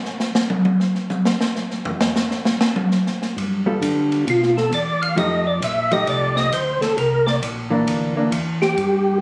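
A percussive, chorus-vibrato tonewheel organ carries the melody up front from 4.3 seconds in this greasy, soulful soul jazz organ trio excerpt, swinging at 133 BPM in C mixolydian over G9, F9 and C9 chords. A swinging big-band drum kit with a punchy kick, medium-tuned snare and dark cymbals plays alone until a round, key-clicking organ bass line with slow rotary speaker enters at 3.4 seconds, joined by a clean, fingered hollow-body electric guitar comping. The sound is that of a phone capturing the band in a club, with compression and a moderate reverb.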